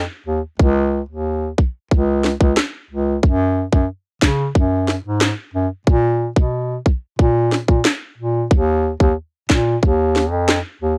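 A straight dancehall groove in four arrives at 0.6 s from an electronic island pop kit, its tight kick, sharp snare, rim click and handclaps sitting up front with a cassette tape grain. Underneath, a bass clarinet carries the bass line from the very start, soft in attack and smooth on top, played solo and up front in a classical manner that gives this short sultry, tough excerpt its dusky weight. The home cassette recording stays dry and close, and the kit drops out at 10.6 s, leaving the clarinet alone to the end.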